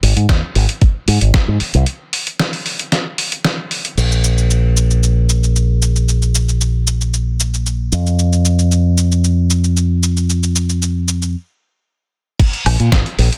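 A punchy, bright fingered electric bass with an envelope filter anchors this groovy, sleek nu-disco excerpt at 114 BPM in a straight 4/4, playing up front from Ab1 to Bb2. A dusty, gritty soul sampler-style kit with a fat snare, hi-hat, shaker, woodblock and crash cymbal runs throughout, while a thumpy electronic kick appears at 0.3 seconds and returns at 12.4 seconds, after a stop that begins at 11.3 seconds. The dense, heavily limited modern master sits in a digital ambience.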